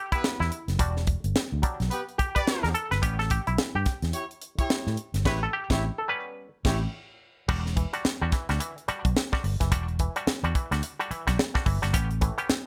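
Driving and hypnotic, this fragment of a 108 BPM funk groove in E dorian, swung on the sixteenths, opens with a percussive, stringy muted clav soloing in stabs through auto-wah and slapback echo while a distant horn section with light vibrato plays a second line until 6.8 seconds, a dry, polished drum kit with a high-tuned snare and tight kick and a dark, round, punchy fingered electric bass hold the front over Em9 and A9 chords, and a band accent from 5.3 to 7.5 seconds leads into a second section under light reverb.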